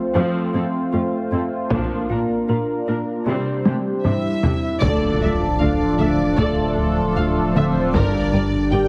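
A cinematic hybrid of orchestral and electronic film scoring in D minor at 77 BPM, this brooding, relentless passage is cut from a longer piece. An up-front, evolving sawtooth pad with chorus holds sustained chords from the start, joined at 0.2 seconds by lush, dark viola and cello sections, and by a round, tine-like thumb-piano synth pluck whose arpeggios sit in the background with chorus and tape echo. Hard-stick taiko drums with a vintage, band-limited character enter at 1.7 seconds as the chords move from F through Bb to Csus2, building toward a drum fill. At 4.0 seconds mellow French horn chords and an expressive violin line with vibrato and portamento join. At 4.8 seconds the full band lands on D minor with an accent, where a woody double bass section, a deep sine sub bass and a rubbery, nasal square-wave bass riff deepen the low end, and a second violin section adds a smooth, even melody with vibrato. 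A very quiet electronic impact sounds, and the harmony shifts to G minor near the close. The scoring stage reverb is moderate, and the overall sound is heavily compressed, with a radio-like quality.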